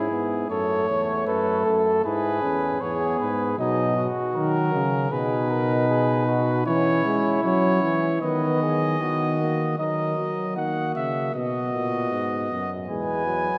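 A mellow, up-front trumpet carries the melody of this contemplative, serious classical canzona for brass ensemble at 78 BPM in 4/4. A dark, close-miked flugelhorn weaves a second imitative line beneath it, a smooth-topped trombone with light vibrato fills the accompaniment, and an up-front euphonium with a soft attack anchors the bass. All four voices sound together from the start through roughly 13.6 seconds, opening on C#m and moving to a new passage at 9.8 seconds, with a wet cathedral reverb lending a long, resonant tail to this brief cut from a longer piece.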